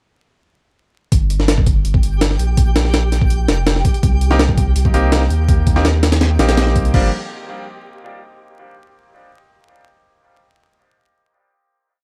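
Drum and bass with a jungle edge, dark and raw, where a gritty, pitched-up breakbeat with a thumpy kick and high-tuned snare is heavily chopped over a thick, saturated sub bass of long gliding notes, a twinkling granular texture holds a high shimmering note from 2.0 seconds, and bright grand piano stabs with 12-bit sampler grit and dub echo push syncopated chord shapes in from 4.3 seconds, all under vinyl crackle before a final chord at 6.9 seconds.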